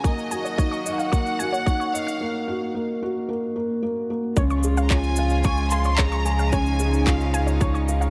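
A felt-muted upright piano riff with audible action noise opens this hopeful, tender piano and strings electronica fragment in Db major at 111 BPM, joined from the start by a focused chamber violin melody, reedy gut-string sustained chords, a warbling lo-fi pluck arpeggio in the background with chorus and delay, and an overdriven tight electronic kick with shaker and handclaps, building through a break until a round, deep analog bass with sidechain pumping arrives at the drop at 4.4 s, all set in a lush hall reverb.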